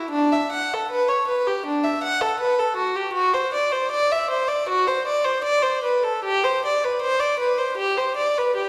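A rubato 4/4 pulse around 78 BPM gives this baroque-style suite movement for unaccompanied violin a dance-like, radiant lilt, moving from D major to G major at 3.2 s. A single period-style violin carries the whole 8.7-second cut from a longer piece, its airy bow and nasal, reedy gut-string tone placed close and up front, ranging from D4 to F#5. A wet scoring-stage reverb surrounds the playing, heard from further back in the room, and the recording carries lossy compression artefacts.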